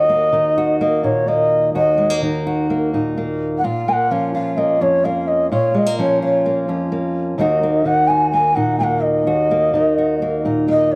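A straight 4/4 pulse at 128 BPM carries this short folk passage in Eb minor, cut from a longer piece and tuned slightly low to A4 = 438 Hz. A fingerpicked steel-string acoustic guitar provides the accompaniment throughout the 11 seconds, its dark, concert-style tone spanning Eb2 to Gb4, with finger squeak audible. Above it, an end-blown bamboo shakuhachi sings the melody between Db5 and Ab5, its airy breath, vibrato and tongued notes set up front yet given a distant cast by a plate reverb. The harmony moves from Ebm to Bbm at 3.6 seconds and back to Ebm at 7.4 seconds. A moderate large-studio ambience surrounds both instruments, lending the yearning, stirring mood a sense of space.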